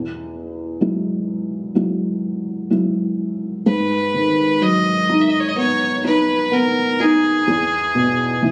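A felt-muted upright piano opens this slow, heartfelt pop passage at 63 BPM, its soft, dark chords sitting up front with a short, intimate sustain. The piano carries the accompaniment over an Eadd9 harmony, and at 3.7 seconds a single bowed fiddle enters with the melody as the chords move to G#m7. The fiddle's tone is rich and intense, shaded by a light vibrato, and it lends a hopeful lift above the mellow piano before the harmony returns to E near 7.5 seconds. The sound has the character of a phone recording made in the room, with light club reverb and compression. The passage is cut from a longer piece.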